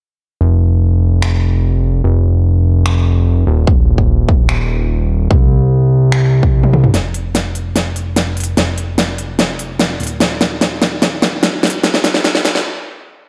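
A fat, detuned analog bass sits up front, mixing sawtooth and square-wave tones into a thick, saturated sound with a filter pluck, a fast attack and sustained notes that pump against a sidechain in a low register. The track is bright, euphoric future bass in a half-time feel, cut from a longer piece. A big-room dance drum kit, up front and tape-toned, brings finger snaps, crisp hi-hats, toms and a huge snare. A punchy, layered electronic kick joins from 3.7 s to 6.5 s, and a drum fill leads into a build-up that begins at 6.9 s and carries a long fill. Everything stops at 12.7 s, and the mix sits under light reverb and a high-pass filter.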